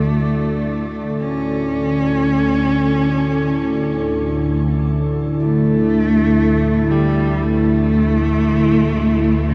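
Desolate and cavernous, this dark ambient drone floats in free time, a brief cut from a longer piece that lasts 9.5 seconds. A lone bowed cello carries the melody up front, its woody, shadowy tone marked by vibrato and set in a distant space through shimmer reverb and tape echo. Beneath it, a deep, moody analog pad holds sustained chords built from sawtooth and triangle waves with a sub octave, its slow attack colored by chorus, phaser and shimmer reverb. Lower still, a calm organ-like drone of detuned sine voices in unison rests on a single low D, swelling in slowly and lingering with a long release under ensemble chorus and its own reverb. The whole mix sits in a huge, wet ambient reverb with a 7.3-second decay, resting on a single Asus4/D harmony that never moves.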